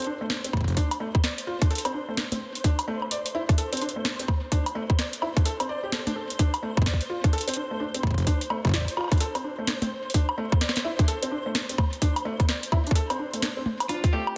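Swung sixteenths at 128 BPM in 4/4 drive this glitchy, cerebral IDM excerpt, where an overdriven, tight electronic kick sits up front beside a booming analog drum machine of crisp snare, metallic hats, toms and woodblock, while a soft, felt-muted upright piano with audible action noise spins dub-echoed arpeggios over D7(no3), Am and Amadd11 chords, a flickering, grainy granular texture hovers in the background, and after a break at 13.0 seconds a slightly broken-up electric guitar slips in a brief melody at 13.9 seconds, all within a dense, heavily limited modern master.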